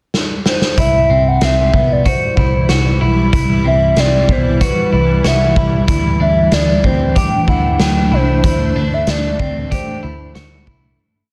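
A steady, straight 4/4 pulse at 94 BPM opens this short dream pop piece, as a raw garage drum kit plays a brief fill in the pickup bar from 0.1 seconds before settling into a simple, spacious backbeat with a tight kick, a medium-tuned snare, hi-hat and a rolled-off top that sits up front. A vintage muted electric bass carries steady eighth notes with a round, foam-muted, amped tone, while a clean picked electric guitar weaves an ostinato of arpeggios touched with subtle chorus and delay. A warbling, nostalgic lead built from square and sawtooth waves sings short motif-based song phrases with vibrato, chorus and delay. From 1.9 seconds a cloudy, detuned granular pad blooms in with a slow attack and its own built-in reverb, holding sustained chords as the harmony moves from Cmaj7 to D7sus4 in C lydian. The dreamy, ethereal mood is framed by concert hall reverb and small room ambience in a dense, heavily limited master, and the piece fades out from 8.4 seconds.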